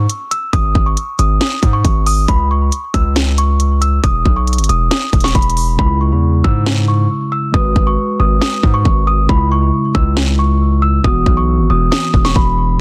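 A bell-like celesta melody, delicate and filtered, with a digital delay trailing its high notes, opens this menacing trap excerpt together with a punchy, saturated 808-style bass that sits up front with a fast attack and heavy decaying sine tone. An instant later the electronic trap kit hits hard, with a hard-clipped kick, a sharp snare and crisp hats, all roughened by vintage 12-bit sampler grit. The groove runs at 137 BPM in 4/4 with a half-time feel in C# minor, moving through C#m, G#sus4 and E5 before cycling through G#m7 and Esus2. At 5.8 seconds the hi-hats fall away and a mellow tine electric piano enters in the middle register, clean and direct, filtered to sit under the celesta. The sound is dry and close, with a dense, heavily limited modern master that keeps the bass and drums punching forward.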